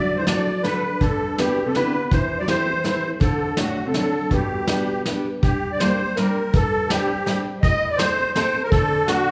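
A reedy, shimmering musette accordion sits up front with the melody in this nostalgic, whirling musette waltz, cut from a longer piece. A bright, fresh-stringed picked acoustic guitar carries the accompaniment. A dark, clean hollow-body electric jazz guitar adds a compressed second line until 5.0 s, just before the harmony turns to minor at 5.4 s. Up-front brushed drums with a punchy kick and a rolled-off top come in at 0.3 s, and a wet recital-hall reverb surrounds the ensemble.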